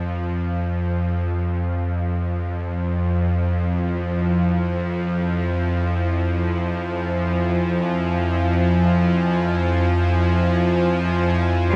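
Dark ambient drone in free time and F harmonic minor, desolate and unsettling, cut from a longer piece and steeped in a huge eight-second reverb with a cassette-tape grain. A tense, string-like bowed drone sits up front from the start, low in register with vibrato and a bright, detuned sawtooth edge. A deep, moody pad fades in beneath it on an F minor chord, shimmering with chorus in the background, before a clear, smooth cello sounds a single bowed note at 11.7 seconds.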